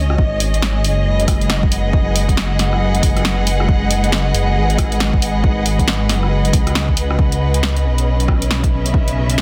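This dense, heavily limited future garage excerpt sits dry and close, with little reverb around its parts. The mood is rainy and wistful, carried by a lush symphonic string section that holds bowed chords with a soft attack and expressive vibrato, pumping under sidechain compression as the harmony moves from G#m7 to C#m7 at 7.2 seconds. Beneath it, a dark detuned saw bass rumbles up front, deep and saturated, its beating sawtooth tone blended with sine weight and also pumping with the sidechain. The drums give a swung sixteenth-note feel in 4/4: a punchy electronic kick joins a deep house kit of woody snare, rim click and shadowy hi-hats, both layered and re-recorded in a small room. The kick stops at 9.0 seconds, shortly before the passage is cut off.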